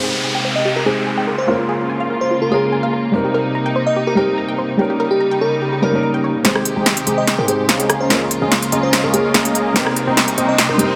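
A dense, heavily limited modern mix sits in a moderate lush hall reverb, framing a euphoric, playful future bass excerpt at 145 BPM in Ab major with a half-time feel, where a dark, boxy baby grand piano with audible action noise and a smooth, bowed string section hold the harmony under filter sweeps on the strings and on a punchy, detuned unison pluck arpeggio, while a bell-like, sparkling FM electric piano carries the melody from 0.6 seconds and a downlifter and riser mark the edges. At 6.4 seconds the build-up begins as the pluck drops out and huge, bright supersaw chords arrive with a filter sweep, joined by a deep, boomy 808-style bass in the background and an up-front, layered electronic drum kit with a punchy snare, crisp hats and rim clicks playing a fill through the section.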